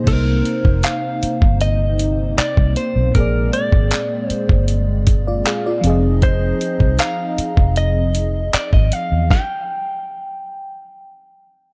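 A late-night, moody slice of contemporary R&B, cut from a longer piece, moves at an unhurried, straight four-beat pace over a dark, close-sounding production with little reverb. A dusty, sampler-style drum kit sits up front with a thumpy kick, fat snare, hi-hat, handclaps and crash, its gritty, compressed sound anchoring the groove alongside a round, punchy foam-muted electric bass. Lush FM electric piano, layered with a soft pad and treated with chorus, carries the chords from Cm7 through Bb7 to Fm7, while a hollow, flute-like pad holds sustained chords beneath it. A clean, direct-recorded electric guitar picks the melody in a compressed, warm tone, and a very quiet glassy synth bell with chorus and phaser adds crystalline glints at the start and again from 7.0 seconds. At 9.3 seconds the band stops, with the drums and bell trailing off by 9.5 seconds, leaving the guitar alone until 11.7 seconds.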